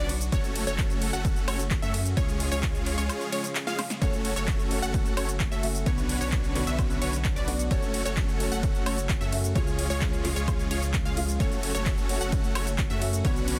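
A very quiet detuned pad, a delayed pumping pluck arpeggio, bright sidechained supersaw chords and a thick saturated sub bass open this emotional, euphoric festival progressive house excerpt in F# minor at 130 BPM, joined at once by an overdriven big-room kit with punchy snare, crisp hats, cabasa, handclaps, ride, woodblock and a punchy electronic kick, while a drum fill at 3.7 s leads to a soft, mellow felt-muted upright piano entering at 4.0 s over F#m, C#, Bmadd9 changes in a dense, heavily limited master.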